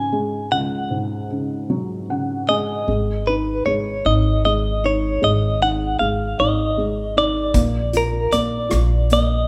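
Light reverb surrounds this short excerpt from a longer piece, with the guitar and piano sitting up front. It is a reflective, heartbroken acoustic folk-pop ballad in a straight 6/8. A bright, twangy clean electric guitar, recorded direct and compressed, carries the picked melody with a tremolo, while a felt-muted upright piano accompanies in soft, mellow, intimate tones with short sustain and audible action noise. At 2.9 seconds a woody, warm, pizzicato upright bass with steel strings joins, sitting up front in the mix. Near the close, at 7.5 seconds, a loose indie drum kit in a small, pumping room adds hi-hat, rim clicks and a tight kick.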